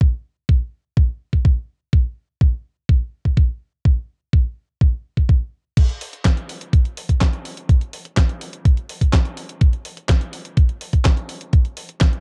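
A thumpy electronic kick drum opens this italo disco excerpt on its own, sitting up front in a steady, straight four-four pulse with a sampler-style character and the faint color of a small room. At 5.8 seconds a clean 12-bit digital drum machine joins it, adding handclaps, hi-hat, a crash cymbal and a fat snare drum that sits noticeably lower in the mix than the kick. Both drum parts carry the same small-room re-recording. The overall production is dark and dry, with little reverb, and the mood leans nostalgic and bittersweet. The fragment is cut from a longer piece and ends at 12.2 seconds.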